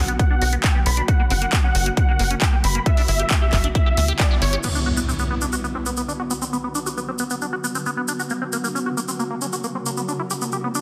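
Bittersweet and soaring, this uplifting trance excerpt moves at 135 BPM in B harmonic minor. It opens with a thick, detuned supersaw melody and a tight, driving sequencer bass, both pumping under sidechain, alongside a punchy, up-front electronic kick, while a big-room kit adds crash, handclaps and hi-hat over a Bm, F# and G6 progression. A squelchy, resonant acid bass arpeggio with phaser and dub echo runs throughout, its filter sweeping in each section. After a band accent at 4.2 seconds the melody, bass and drums drop out at 4.6 seconds, when an electronic impact lands and a grainy cabasa enters. The dense, heavily limited master carries light reverb.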